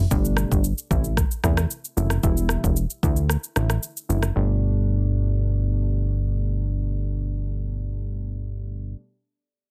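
A punchy, funky analog bass with a fast filter pluck opens this breezy, romantic afrobeats excerpt at 113 BPM in G major, joined at once by round, warbling electric-piano-like synth keys bathed in chorus and an up-front electronic afro-pop kit of deep kick, rim click and shaker that drives the Gadd9, Am, Em and Dsus2 changes. The kick drops out at 3.3 seconds before the drums stop at 4.3 seconds, leaving bass and keys to carry the return to Gadd9 in a dry, dense, heavily limited modern mix.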